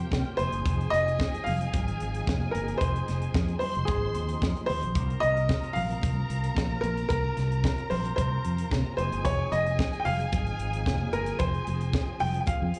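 A clear baby grand piano carries the melody up front, its short-sustain notes touched with slapback echo over a glamorous, danceable disco groove in F minor at 112 BPM. A fingered electric bass, direct and amped, sits equally forward, while a tight funk drum kit with a high-tuned snare and tight kick drives the straight 4/4 feel from 0.1 seconds, its top end rolled off. Behind them, a lush studio string section bowed with vibrato and portamento adds an expressive second line, and a fat, lightly overdriven tonewheel organ holds sustained chords with key click, percussion, chorus vibrato and a slow rotary speaker. Thick-skinned, high-tuned congas played with soft hands sit in the background with a vintage, band-limited tone and their own slapback echo. The harmony moves from Fm7 to C7sus4 and back, and the whole cut, taken from a longer piece, sounds like a live gig heard through a venue's PA, with small club reverb.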